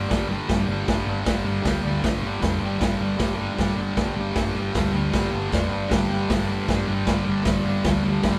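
A raw, lightly reverberant live-in-one-room sound frames this swaggering garage rock fragment at 155 BPM in straight 4/4, where a thick, bright, double-tracked fuzz guitar riff sits up front on a G5 chord between G2 and G3, a round, dark hollow-body short-scale bass plays beneath it from G1 to G2, and a gritty, saturated drum kit with punchy kick, medium-tuned snare, hi-hat and a pumping small-room ambience drives the 8.4-second cut.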